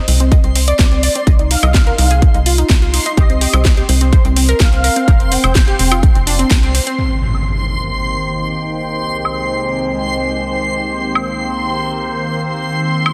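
Progressive house with a bittersweet, driving mood, cut from a longer piece: an up-front punchy kick, a cracking snare with metallic hats and woodblock, and a tight sawtooth sequencer bass pump beneath a round, warbling analog pluck arpeggio, while a smooth, dark synth lead with vibrato and digital delay carries the melody over a reversed, dreamy texture that runs throughout. At 7.0 seconds an electronic impact marks the shift, and from 7.6 seconds an evolving, morphing wavetable pad with phaser and 12-bit sampler grit holds sustained chords through to the end. The master is dense and heavily limited with light reverb.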